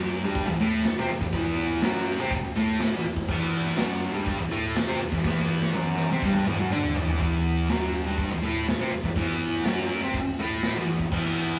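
A straight 4/4 pulse at 123 BPM drives this gritty, raw garage rock passage in E minor, cut from a longer piece, with a thick, double-tracked fuzz guitar riff ranging from E2 to D4 sitting up front beside a saturated acoustic drum kit of punchy kick, medium-tuned snare, hi-hat, toms and crash. A very quiet, jingly tambourine, close and dry, joins at 3.3 seconds, and a drum fill beginning at 5.2 seconds leads into a second section at 7.2 seconds where the riff leaves the E minor chord. The rough rehearsal-room sound carries saturation, a pumping bright stone room on the drums with a rolled-off top, and a wet reverb of about 1.2 seconds.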